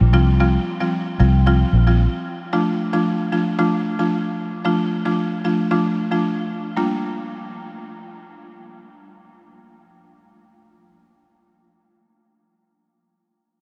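A dreamy, reverb-soaked mix frames this sultry, hypnotic afrobeats fragment, where a dark, round, foam-muted vintage electric bass sits up front only until 2.1 seconds while a buzzing, woody marimba struck with medium mallets carries the accompaniment through a Csus4 to Dm to Gm7 progression, its airy hardwood bars shifting to the final chord at 6.8 seconds.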